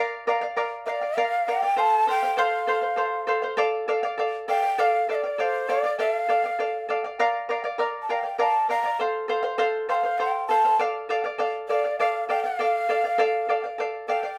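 A breathy, hollow cane quena carries the melody up front from 0.9 s, its tongued notes closely miked and shaded with vibrato. Beneath it, a bright, fingerpicked acoustic charango shimmers through its double strings, some doubled at the octave, cycling Bb, F and D minor chords in a festive, earthy Andean folk tune at 100 BPM in 3/4. The two play live in one room with moderate studio reverb, in a passage cut from a longer piece.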